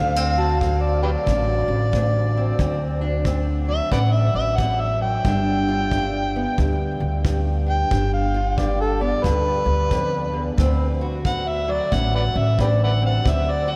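A 90 BPM groove in 4/4 swings its eighth notes, giving this short excerpt of acoustic country blues in D mixolydian a laid-back yet rollicking feel. An amplified, overdriven harmonica sits up front and takes a gritty, jazz-style solo across the full 13.8 seconds, its light vibrato, tongue slaps and scooped notes colored by an analog delay. Beneath it, a fingerpicked parlour steel-string guitar supplies a dark, boxy accompaniment with a subtle chorus, while a woody pizzicato upright bass on steel strings holds the low end up front. A natural, punchy kick drum played with brushes enters at 0.6 seconds. The harmony moves from D7 to G7 at 5.3 seconds and back to D7 at 10.6 seconds, all bathed in a huge ambient reverb that gives the mix a dreamy, soaked quality.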